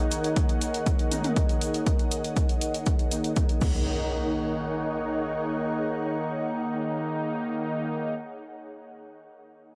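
A sweeping resonant pad, bold analog synth brass stabs and an ethereal airy pad open this driving, cinematic melodic techno passage at 120 BPM in Eb minor, resting on an Ebm7 chord and cut from a longer piece. The brass is fat and detuned, sitting up front with chorus, tape echo and sidechain pumping, while a filter sweep on the analog polysynth runs through the first 3.9 seconds. Beneath it the sawtooth pad evolves with a resonant filter swell and a warbling vintage character, and the airy pad adds a mellow, full-bodied layer with ensemble chorus, phaser and built-in reverb, both breathing with sidechain pumping. A punchy, overdriven electronic kick drives from 0.4 seconds alongside a layered deep house kit of crash, hi-hat and toms in a small room, with a grainy tube shaker in the background, all dropping out near 3.7 seconds. Just before that, an electronic impact enters at 3.6 seconds and rings on as the pads and brass carry the second section, all within a dry, gritty hardware sound with transformer saturation and light reverb.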